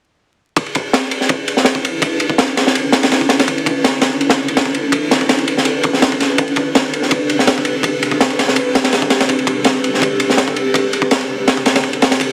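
A crunchy, saturated breakbeat kit sits up front in this dark, nostalgic drum and bass excerpt at 165 BPM. Its punchy kick, high-tuned snare and ride cymbal arrive at 0.6 s with a gritty, rolled-off top, all filtered for a lean low end. From 1.3 s, a blurred, detuned granular cloud pad slowly fades in, holding evolving chords that move from Bm11 to Am11 at 6.4 s, while heavy radio-style compression, vinyl crackle and a moderate plate reverb give the whole piece a worn, dusty sheen.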